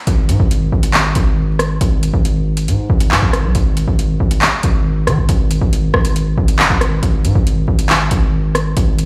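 A half-time pulse in 4/4 drives this dark, tense drill fragment from a longer hip hop track, with an electronic drum kit of metallic hi-hats, handclaps and rim clicks sitting up front throughout. Alongside it, a heavy, aggressive 808-style bass with a saturated sine tone, a noise layer, a fast attack and a decaying tail growls from G1 to D#3. The whole mix sounds as if played on a big sound system in a bare room, bathed in large studio reverb and flecked with vinyl crackle.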